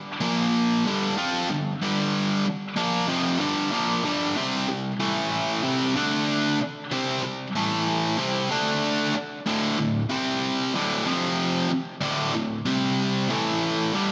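A straight 4/4 pulse at 94 BPM drives this anthemic, energetic rock excerpt, cut from a longer piece. A single high-gain distorted electric guitar carries it alone from 0.2 to 14.1 seconds, bright, picked and double-tracked, sitting up front between D2 and F4 with tape echo trailing its notes. It opens on power chords moving from Bb5 to G5, then from 4.4 seconds shifts into a longer passage that circles through C5, A5 and D5, breaks briefly from the chords at 9.1 seconds, and climbs to F5 before settling back on A5. A wet recital hall reverb with a 1.8-second tail gives the sound a big arena scale.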